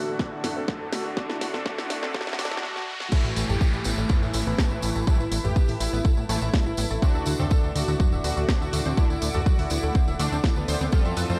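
A straight 4/4 pulse from a punchy, up-front kick and a tape-sheened house kit with cracking snare, hi-hat, toms and crash drives this melancholic melodic techno excerpt in a dark, lightly reverberant mix, where a drum fill, background riser, noise sweep and downlifter, and filter sweeps on the smooth supersaw melody and the edgy, nasal sync-sweep polysynth stabs build toward a drop at 3.1 seconds that brings in a jingly tambourine and a funky, plucky analog bass beneath tight sequenced arpeggios with dub echo, a deep, moody pad, a very quiet evolving drone and a blurred granular cloud pad, with sidechain pumping on the bass, supersaw, arpeggios, stabs and moody pad.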